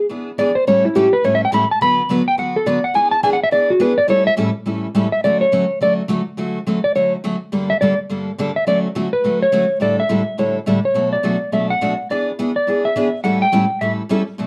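Swinging and cheerful, this short country cut has a band playing live in one small room with moderate reverb, the eighth notes carrying a swing. A clean, dark-toned lap steel guitar sits up front with a slide solo that runs the whole length, resting at about 13.9 seconds. Beside it, a bright picked steel-string acoustic guitar with fresh strings provides accompaniment, its finger squeaks audible, over a chord progression that moves from E7 and A7 through Dmaj7, Gmadd9 and Bm7.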